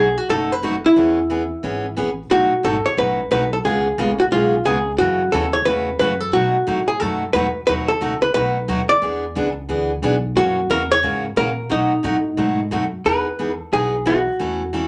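A wet club reverb surrounds this short, swinging western swing excerpt in E major, moving at 179 BPM with a lilting swing on the eighth notes and a down-home country mood. A dark, clean, compressed hollow-body archtop guitar, miked and amplified and sitting up front, carries the picked melody, while a bright, full-bodied dreadnought steel-string acoustic guitar, also up front, supplies picked accompaniment and a woody pizzicato upright bass holds the low end. The harmony runs through seventh and sixth chords such as B7, C#7, F#m7 and F#7 before resolving onto Emaj7 at 13.1 seconds as the opening section returns.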